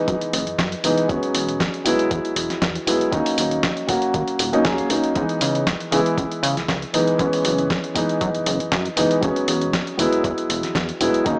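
A dark, boxy baby grand piano opens this sensual, cosmic nu-disco excerpt at 118 BPM, sitting up front with short sustain, sidechain pumping and digital delay as it moves through chords like F#9sus4, E69, D#m7 and C#m9. From 0.1 seconds a glossy, detuned synth bass with pulse-width modulation, filter sweeps and chorus joins alongside a gritty, tape-warm sampler-style kit of hi-hat and medium-tuned snare, plus a thumpy electronic kick, all riding a light 16th-note swing. Light reverb and a small-speaker character give the mix a compact feel.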